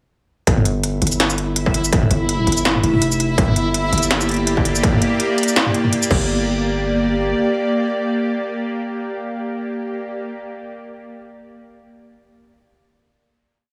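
Half-time drum and bass at 165 BPM in G dorian, heavy and tense, where from 0.5 s a distorted electronic kick and an industrial kit with clanging snare, smooth hats, shaker, low toms and crash drive a sparse, swung half-time beat under a deep, sine-toned 808-style bass in chopped phrases, while a reversed, granular texture holds a dreamy high note in reverb and, from 3.9 s, a string-like, detuned sawtooth drone with vibrato and sidechain pumping carries sustained chords past the final hit at 6.3 s.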